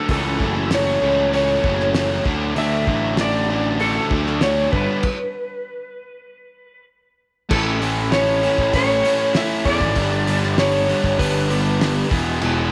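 At 97 BPM in a straight 4/4, a cloth-damped, thuddy acoustic drum kit drives this sunny, confident classic rock excerpt with a fat snare, tight kick, dark cymbals and a rolled-off top. A growly fuzz-picked electric bass sits up front, bright and overdriven. Two guitars carry the riff: a scooped, compressed, distorted electric guitar with a bright picked edge, and a hollow-body overdriven semi-hollow guitar tucked in the background. Above them, an electric slide guitar played with fingerpicks sings the melody in a slightly broken-up, warm tone. The chords move from A to D to G, then a stop runs from 5.0 to 7.5 seconds before a second section returns to A, passes through G and lands on E at 12.1 seconds. A moderate echo chamber reverb gives the whole band a roomy glow.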